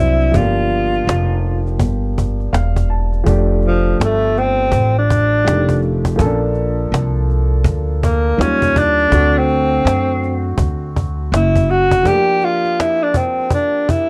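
A swung 82 BPM jazz-hop groove in F major rides on a snappy, close and dry cajon, with a woody pizzicato upright bass up front that carries tube saturation and drops out at 12.0 s. A baby grand piano with long sustain and plate reverb plays throughout and adds a fill at 2.2 s, then a breathy, whispered tenor saxophone with vibrato, subtone and scooped notes takes an intimate, mellow solo from 3.3 s over Bbmaj7, Eb9 and D7 changes. The whole cut, taken from a longer piece, has a cool, warm mood, sitting in a small room and colored by worn cassette tape with warbly pitch drift.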